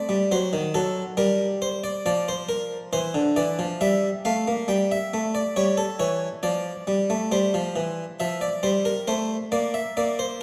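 Set in a moderate concert-hall reverb, this 10.4-second excerpt of a baroque-style classical two-part invention in 3/4 at 68 BPM, tuned to A4 = 439 Hz, features a solo Italian-style harpsichord with one set of strings, close-miked and up front, its plucked tone full and round, moving in a stately yet lively way from a rootless D7 through Gm and A7/G before turning at 7.3 seconds to a new section on C that closes on Amadd11.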